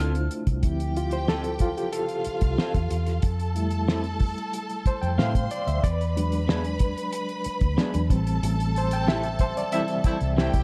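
From the first beat, a lush, romantic 1970s-style soul groove at 92 BPM sets a cloth-damped, thuddy drum kit and a round, foam-muted fingered bass up front beneath a barky, lightly overdriven reed electric piano with fast tremolo that solos across the passage, while a twangy, slightly broken-up guitar riff sits in the background, a bowed string section adds a lush second line with vibrato and portamento, and a mellow, distant horn section with tube saturation enters with tight stabs at 9.1 seconds over a band accent in this short, dark, lightly reverberant cut moving through Dm7, Fmaj7, E7 and Am7.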